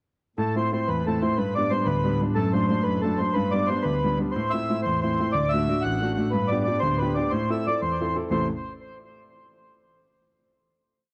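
Celtic folk jig in A dorian, wild and driving at 121 BPM in 6/8, set in a dry, close 1970s-style small room. A mellow, reedy accordion with tape echo carries a motif-based melody of song-like phrases up front, while a clear, vintage grand piano with short sustain plays an oompah of bass notes and chord figures beneath it, and a dark bowed string section holds a low drone on A in the background with vibrato and portamento. The short piece moves through Am, G, D/F# and D before settling on a final chord at 8.3 seconds.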